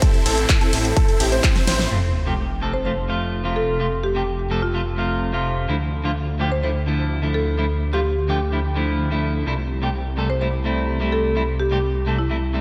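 Festival progressive house at 127 BPM in F major, this uplifting, anthemic excerpt opens on a short drop. A huge, euphoric supersaw lead riff with phaser and a low-pass filter and a worn vintage grand piano playing arpeggios both pump under sidechain, joined by a punchy up-front kick and a big-room kit with a huge snare, handclaps, hi-hat and ride cymbal. The kick drops out at 1.5 s, and the kit, piano and lead break off after a fill ending at 1.9 s, where a sub drop sits in the background as the chords move from Am to F. A thick, saturated detuned saw bass with chorus enters at 0.3 s and carries on to the end. From 1.9 s a clean, picked electric guitar provides accompaniment, and from 2.7 s a woody, buzzing marimba takes the melody with 12-bit sampler grit and tape echo over Dmadd9 and C6 chords. A lush hall reverb soaks the mix in a dreamy haze.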